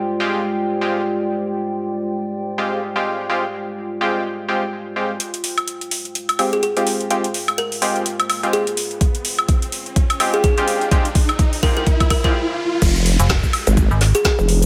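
Swung sixteenths at 126 BPM in 4/4 drive this bouncy, aggressive bass house excerpt in F dorian, cut from a longer piece and opening on an Fmadd9 chord. A deep, moody analog pad with a moving notch holds sustained chords and a warbling, nostalgic tape-like pad adds texture, both under the pumping of the sidechain, while a band-passed, nasal sawtooth stab sits up front with chorus and dub echo. From 5.2 seconds a garage drum kit with a woody snare, metallic hats, cabasa, woodblock and crash cymbal starts the build-up as filter sweeps open the stab and the analog pad. A hollow, thumbnail-plucked kalimba melody enters at 6.5 seconds, and a riser climbs from 8.4 seconds. A knocking, overdriven electronic kick joins for a drum fill before a brief stop, and at 12.8 seconds the drop lands on Fm with a resonant vowel-sweep wobble bass, soon joined by a metallic, decaying FM bass. Drums and basses sit up front over light digital reverb.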